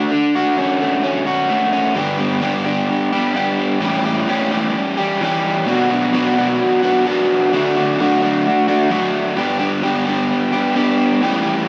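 Carefree yet wistful, this short rock excerpt is cut from a longer piece and moves in a straight 4/4 feel. A single electric guitar carries everything as a solo part from start to finish, its overdriven, crunchy tone sitting up front in the mix. The playing is picked and double-tracked, giving the guitar a thickened, full-bodied presence across a range from G2 to G4. A brief opening passage gives way at 2.0 seconds to a longer stretch, with the harmony moving from Dmaj7 through G, A7, Bm and D before returning to G near 9.4 seconds. The sound carries the feel of a band playing live in one room, bathed in a wet, large studio reverb.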